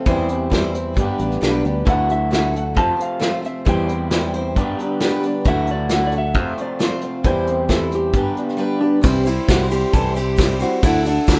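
A dark, slightly broken-up electric slide guitar carries the melody from 1.9 seconds in this hopeful, jangly folk and heartland rock excerpt at 134 BPM, over picked steel-string acoustic guitar with audible finger squeak, a twangy phaser-tinged electric guitar riff that stops at 9.0 seconds, fingered electric bass, and a roomy brushed drum kit, before a very quiet woody upright piano, lush bowed strings and a grainy egg shaker join at 9.0 seconds in a rough, lightly reverberant home demo mix.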